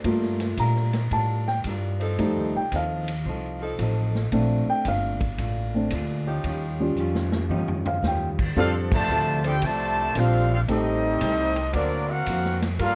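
A swinging 4/4 pulse at 113 BPM drives this joyful big band jazz passage in F major, cut from a longer piece. A punchy kick, a medium-tuned snare, hi-hat, ride, crash and toms sit in a big, natural room, while the woody pizzicato upright bass stands up front. The piano takes a featured solo over the opening chords, its tone warm with deep bass and short sustain, supported by a clean picked hollow-body electric guitar and a smooth, clear saxophone section holding sustained chords in the background. A drum fill at 7.0 seconds leads to 8.6 seconds, where a warm trumpet section enters up front with the melody and light vibrato, joined by a brilliant trombone section on a second line and a band accent just after. The piano drops out at 11.7 seconds as the harmony moves toward a D7alt. Light reverb and a worn, warbling cassette-tape character with pitch drift give the whole recording an aged feel.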